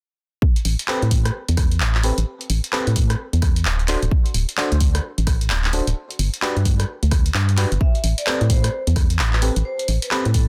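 A bouncy, late-night slice of two-step UK garage, its swung rhythm carried by a punchy, layered electronic kick up front and an analog drum machine supplying handclaps, hi-hat and rim clicks with a small-room tint, while a dark, hollow, organ-like FM bass sits prominently beneath. Glassy FM electric piano stabs with a bell-like attack, chorus and tape echo move through Am9, D7 and Gmaj7, and at 7.8 seconds a metallic, ringing vibraphone played with medium mallets enters with a short tape-echoed melody. The mix is dry, dense and heavily limited in a modern style.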